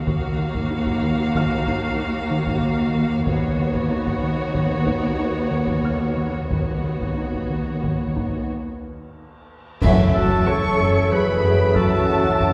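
An eerie, tense suspense film cue in 5/4 at 93 BPM opens with veiled, con sordino strings in two violin lines, violas, cellos and double basses, and a faint felt-muted upright piano, over which a rubbery, hollow square-wave bass riff and background taiko drums enter at 0.1 s, soft round timpani and dark cymbals with clash cymbals and concert bass drum punctuate the build, and after a break and drum fill a band accent at 9.8 s brings mellow French horns, trombones and a high violin texture on F#m7, joined by a distant, roomy clarinet at 10.1 s, all heard from further back in a reverberant concert hall.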